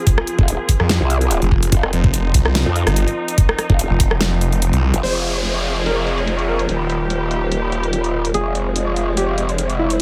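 Biting, vibrato-laden strings with 12-bit grit and a deep, detuned ambient pad pumping in the background open this menacing, chaotic heavy wobble dubstep excerpt in F minor at 145 BPM with a half-time feel, as a knocking, up-front kick, a huge snare with bright filtered hats, a saturated wobbling growl bass and a snarling detuned sawtooth bass drive the drop until the kick cuts out at 4.2 seconds and, at 5.0 seconds, a warm baby grand piano melody with dub echo and an electronic downlifter arrive over a move from Fm to Ebadd9 and back.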